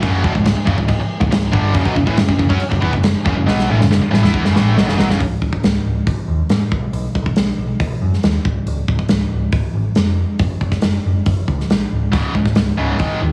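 Anthemic, swaggering hard rock opens with a big-room drum kit, a round, punchy, dark picked bass and two double-tracked distorted guitar riffs, one tight and up front, the other bright, overdriven and in the background, all starting together until a drum fill at 3.5 seconds leads to the guitars dropping out at 5.2 seconds, leaving the tight-kicked, mid-forward drums and amped bass to drive on before the tight guitar returns at 12.1 seconds, all under light reverb and a heavily compressed radio sound in this cut from a longer piece.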